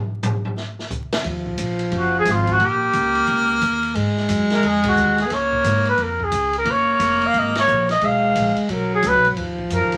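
A mellow trumpet carries the melody, its soft attack sounding distant and roomy even as it sits up front, in this late-night, smoky passage of small-group swing and bop, cut from a longer piece. The tune swings at 177 BPM in Eb minor, opening with a short drum solo on an acoustic kit with dark cymbals, a medium-tuned snare and a boomy kick. At 1.2 seconds a breathy baritone saxophone enters with a whispered subtone second line, touched by light vibrato, alongside a woody, thumpy pizzicato upright bass on gut strings, and the trumpet joins at 2.0 seconds. The harmony moves from Ebmadd9 through Eb7, Gbmaj7 and Abm11, and the band punctuates the groove with two accents. A moderate studio reverb and a layer of vinyl crackle lend the sound an aged atmosphere.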